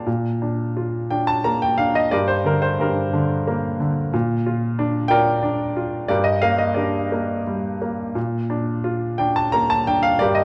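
A dark, warm production places a clear, natural-sounding baby grand piano up front in a moderate concert hall reverb, its notes carrying a short sustain. This relaxed, sunny excerpt of lyrical classical solo piano moves in 3/4 at about 89 BPM in B-flat major, with uneven beats and rubato giving the phrasing a loose, breathing feel. Spanning G2 to Bb5 across roughly 10.4 seconds, the piano alternates between Bb and Gm harmonies, as in a fragment lifted from a longer piece.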